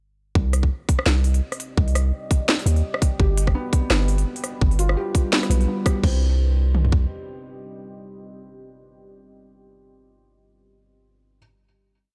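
Tense and heavy, this short half-time drum and bass piece moves at 169 BPM in C harmonic minor, with a light swing on the sixteenths. The drop hits at 0.4 seconds: an up-front electronic kick, tight and layered with mid and floor toms, joins cracking snare, crisp hats, rim clicks and crash in a sparse, tape-tinted beat, both kits sitting in studio reverb. Underneath, a sine-like 808-style bass holds long, dark notes with a fast attack that decays, while a moody sawtooth pad with detuned unison, a sub octave, chorus and its own reverb sustains deep chords that pump against the sidechain. At 3.2 seconds a soft, felt-muted upright piano enters with an intimate arpeggiated step sequence through tape echo, its action noise audible and its 10-step loop drifting against the bar. The harmony moves from C minor to G and back to C minor for a final chord at 6.0 seconds, and the recording carries a dry, gritty hardware character with a faint mains hum.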